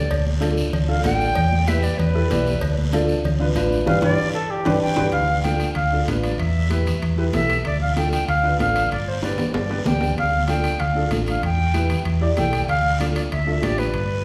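This driving, passionate cumbia excerpt at 191 BPM in 4/4 with a straight feel sits in D dorian. It opens with an airy silver concert flute carrying the melody with vibrato and tongued notes, placed up front yet with a distant quality, over a round, punchy fingered electric bass that anchors the low end. Bright, high-tuned congas struck with hard hands and ringing cowbell and timbales play in the background, while a raspy guiro sounds farther off and a clear, woody upright piano, worn and slightly detuned, plays accompaniment. The flute's solo stretch gives way to a new section at 5.1 s, with a drum fill and band accent landing just before, and another fill arrives at 9.2 s. The chords cycle through Dm, Em and G, all set in a wet recital hall reverb with a 1.9-second decay.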